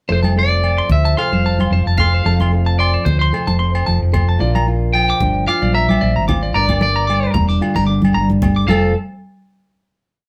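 Opening together at 0.1 s, a twangy, slightly broken-up electric guitar picks call-phrase motifs up front over a round, dark, syncopated hollow-body bass figure, a fingerpicked nylon-string guitar with alternating thumb and audible finger squeak, and a clean, compressed electric guitar running sixteenth-note arpeggios in threes, while bright, thin-skinned congas and ringing, band-limited agogo bells in the background join at 0.2 s in this carefree, danceable, lightly swung highlife groove, played live in one room with moderate reverb before landing on a final chord at 8.7 s.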